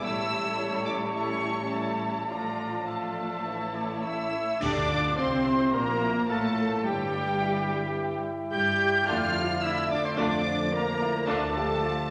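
From the first moment, a rich, vibrato-laden violin section carries the melody of this stormy, restless classical excerpt at 108 BPM in D minor, over clear oboe, a very quiet dark clarinet, an airy, distant flute section and a second, softer violin section, with mellow bassoon, lush violas, cellos, double basses and background French horn chords beneath, before a very quiet dark trumpet enters with stabs at 4.0 seconds and, at 4.6 seconds, a distant trombone section joins alongside a brief accent of clash cymbals and concert bass drum, all in a reverberant scoring-stage space.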